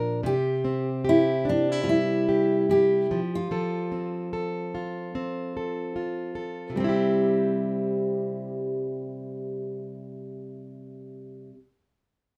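A relaxed 74 BPM in 4/4 rolls along with a 60% swing on the sixteenths, giving this short acoustic pop passage, cut from a longer piece, a sunny, carefree lilt. A fingerpicked, plugged-in jumbo steel-string guitar carries the accompaniment from the first moment, its fresh strings sounding warm and full-bodied and sitting up front as it ranges from Bb2 to Bb4. A fingerpicked dreadnought steel-string joins at 0.3 s with the melody, staying between C4 and G4, full-bodied in tone with audible finger squeak. The harmony sits in C major, moving from C to F, and the opening idea gives way to a new section at 6.8 s. A moderate studio reverb lends both guitars a gentle sense of space, and the tuning sits a touch high at A4 = 441 Hz.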